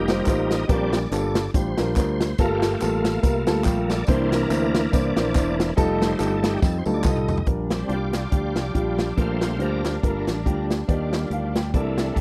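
A bright, shouting tonewheel organ with slow rotary speaker and chorus vibrato solos across this hopeful, reverent uptempo gospel excerpt at 142 BPM in a swung 4/4, over a dark, intimate grand piano with audible action noise, a round, punchy fingered electric bass, a polished big-band drum kit with a punchy kick that plays a fill before a lush bowed string section slips in behind at 7.5 seconds, and background tambourine and handclaps that drop out just before it, all in a dry, close 1970s-style studio sound.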